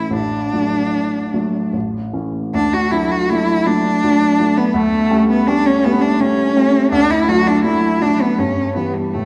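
Warm and serene, this short romantic classical passage, cut from a longer piece, sways in a rubato triple metre as a single bowed cello, rich and focused with vibrato, sings the melody up front over a warm baby grand piano accompaniment, both playing throughout in the wet reverb of a recital hall.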